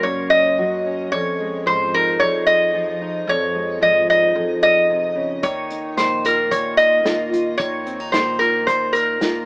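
Gentle and peaceful, this short acoustic folk excerpt in Db major moves at 111 BPM in a straight 4/4, drifting from Gb to Dbadd9 and then Ebsus2. A bright, metallic, nasal lap resonator guitar, played with a steel bar and fingerpicks, carries the solo up front over a full-bodied fingerpicked dreadnought acoustic guitar and a woody pizzicato upright bass sitting in the background. An unplugged drum kit with a punchy kick and bundle sticks joins at 5.4 seconds, and the whole mix has a light reverb and an AM radio sound.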